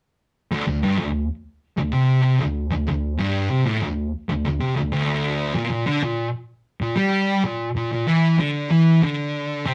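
Rough and tube-saturated in a small rehearsal room, this hypnotic, ominous metal fragment at 95 BPM sets a thick, distorted fuzz guitar riff up front from 0.5 to 9.7 seconds, joined by a second fuzz guitar riff sitting in the background, moving from D5 to Bb6 at 5.5 seconds in a tuning slightly below standard pitch.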